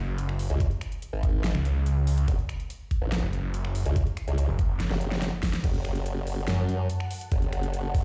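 A snarling, growling saw bass opens this heavy wobble dubstep drop, detuned and saturated with overdrive, holding the front of the mix until 4.9 seconds. Close behind, a formant-swept wobble bass built from pulse and sine tones churns with chorus and overdrive, while a knocking electronic kick and a layered big-room drum kit drive the half-time feel with a huge snare, metallic hi-hats, finger snaps and crash cymbal. The mood is chaotic and menacing, and a drum fill near the midpoint leads into a second pass of the drop. At 6.4 seconds, an ethereal, mellow pad drifts in far in the background, its slow-blooming tone shimmering with ensemble chorus, tremolo, its own reverb and sidechain pumping. The sound feels dry and close, like a big system pounding in a bare room with a large studio reverb around it, in a short section cut from a longer track.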